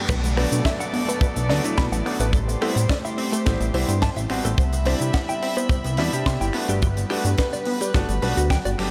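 Cosmic and sensual, this nu-disco excerpt drops straight into a straight-feel groove in 4/4, bathed in a dreamy cathedral reverb. An up-front, tight acoustic kick anchors the small-room funk kit, whose high-tuned snare, hi-hat, shaker, finger snaps and crash cymbal sit further back, while a glossy, mellow chorused synth bass carries the low end. Soft-bowed, distant strings hold floating sustained chords with a vintage 12-bit sampler grit and sidechain pumping, and a round, wave-folded analog pluck spins arpeggios in the background through chorus, pumping and diffuse ambient delay. A direct-recorded clean electric guitar plays a compressed, picked riff with analog chorus and delay, and from 0.4 seconds a brilliant baby grand piano adds accompaniment with long sustain and its own ambient delay. A very quiet reverse cymbal and downlifter colour the opening until 4.6 seconds, as the harmony moves through Bm7, Am7, Cmaj7 and Gmaj7.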